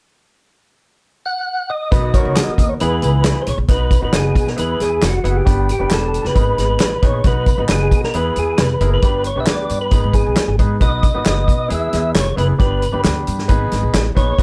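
A percussive tonewheel organ carries the melody in this joyful, danceable slice of uptempo 1960s-style soul, its mellow, round, dark tone lightly overdriven and spun through chorus vibrato and a fast rotary speaker, entering alone at 1.3 s. At 1.9 s the band arrives at 135 BPM in a straight 4/4: a natural country drum kit sits up front with a punchy kick and medium-tuned snare, joined by a woody, pizzicato upright bass on steel strings. A clear baby grand piano adds intimate accompaniment with audible action noise and long sustain, bathed in plate reverb. A tight saxophone section with light vibrato plays a brief jazz-style second line that ends at 3.5 s. Tambourine and handclaps, with tube shaker and group claps, stay close, dry and in the background. In B major, tuned slightly flat of standard pitch, the harmony cycles through B, E, G and G#m under light reverb in this warm, joyful passage cut from a longer piece.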